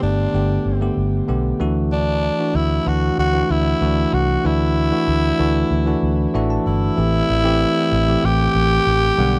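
A growling, breathy tenor saxophone carries the melody with tape echo and light vibrato over bell-like tine electric piano and a dark, foam-muted fingered electric bass in this glossy, nostalgic 1980s-style pop cut at 95 BPM, moving from Gadd9 to Dadd9, with the electric piano adding a fill at 6.0 seconds before the shift to Am7 at 7.0 seconds, all captured in a dry, close studio sound.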